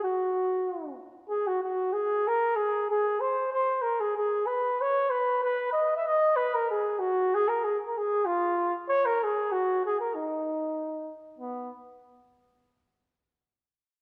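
Festive and bouncy, this fragment of an alpine folk piece moves in a lilting 2/4 with a gentle swing on the eighth notes. A lone flugelhorn carries everything as the solo voice, playing in a classical style with a mellow tone and light vibrato across a range from B3 to E5. The horn sits up front in the mix, yet it also has a distant, roomy quality. A moderate scoring stage reverb gives it a soft halo, and the overall production leans dark and warm. The opening passage runs to 11.4 seconds before a brief new section begins, and the flugelhorn stops at 11.7 seconds.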